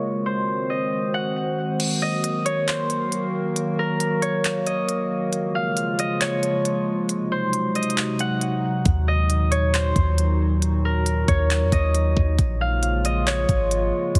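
A bright, ringing Celtic harp melody, softened by a low-pass filter and tape echo, opens this spacious, melancholic cloud-rap excerpt in Eb dorian at 136 BPM in a half-time feel over a warbling, nostalgic lo-fi pad with chorus, reverb and sidechain pumping; crisp trap hi-hats, handclaps and crash cymbal enter at 1.8 seconds, and at 8.9 seconds the knocking kick arrives with a deep, boomy, clean 808-style bass, all within a heavily compressed, radio-like mix.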